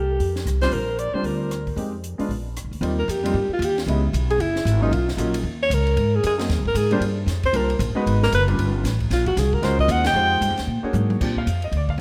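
A brisk 229 BPM swing in 4/4 drives this playful small-group jazz excerpt, with a woody, growly pizzicato upright bass up front and a compact cocktail kit of dark cymbals, high-tuned snare and punchy kick. A breathy alto saxophone carries the melody with subtone and vibrato through an analog delay, while a baby grand piano, touched by subtle chorus, comps through moving chords such as Bb69, Bmaj9#11 and G7#11. The dreamy, reverb-soaked mix frames a break at 2.6 seconds, a band accent at 10.0 seconds and a drum fill from 10.7 seconds.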